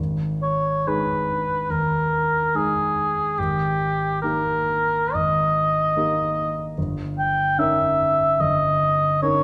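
Melancholic and yearning, this short romantic classical passage for oboe and grand piano unfolds in G# minor at a slow, rubato 62-76 BPM in 4/4. The baby grand piano sounds first at 0.0 s, its warm, natural tone and short sustain setting a low accompaniment that reaches from deep bass notes into the middle register. The mellow oboe joins at 0.4 s and carries the solo melody in its middle range, singing with a light vibrato and a roomy, slightly distant character while still sitting up front. Beneath it the harmony moves from G#m to D#/G# and then to D#7/G. A recital hall reverb with a 1.6-second decay surrounds the duo, and the passage is cut from a longer piece, ending at 9.4 s mid-thought.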